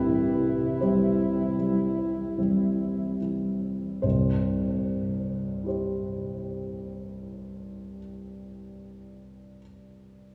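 A mellow French horn carries the melody at the start, its single note touched with light vibrato and heard from a distance, and it stops at 3.2 seconds. Beneath it, a dark grand piano provides accompaniment across a broad register, sitting close and intimate with audible action noise and a smooth, vintage character. This fragment of a longer romantic classical piece for horn and piano moves in a slow triple metre with a free, rubato feel, easing back in pace through its opening phrase. After the horn falls silent, the piano continues on its own into a second section beginning at 4.0 seconds and plays until 10.3 seconds. A cathedral-like reverb with a long decay bathes the sound in the spacious air of a church or concert hall, giving the whole a serene, warm mood.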